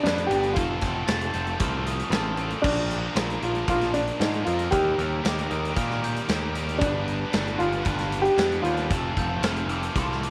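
A small room with moderate spring reverb frames this restless, cool indie rock excerpt at 115 BPM in 4/4, where a dark, woody upright piano carries the melody with slapback echo over a scooped, distorted electric guitar riff joined by a raw overdriven garage guitar riff with subtle chorus in the background, a growly, punchy bass up front, a big rock drum kit with bright cymbals and a tight kick, and a bell-like glockenspiel second line entering at 1.1 seconds, all moving through G, F, Bb and Eb.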